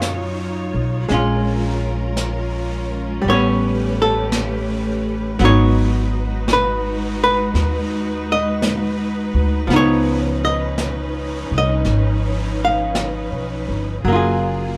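Wistful and intimate, this short excerpt of a swung jazz ballad sets a clean, hollow-body archtop guitar up front over lush bowed strings with vibrato, a woody, thumpy pizzicato upright bass and a dark, brushed drum kit with a rolled-off top, all captured as a band playing live together in one studio room with moderate ambience as the harmony drifts from Ebm9 toward a closing Gbmaj9.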